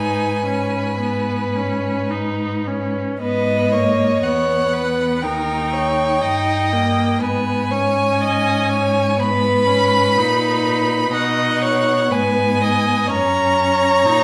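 The rhythm moves in a gentle, rubato four-beat metre, giving this slow romantic movement for string quartet a lyrical, warm mood as it is cut from a longer piece. A clear first violin sits close and up front, singing the melody with smooth, even bowing and vibrato, while the second violin traces a supporting line from a more distant position. Beneath them, the viola fills in accompaniment and the cello anchors the bass with a focused sound; these lower three voices share a rich, vibrato-laden tone, each played by a single bowed player. The harmony rests in minor through a short opening passage, and a new section begins at 3.2 seconds and runs to 14.2 seconds, shifting through major chords along the way. A wet recital hall reverb surrounds the ensemble, lending the strings a spacious, resonant glow.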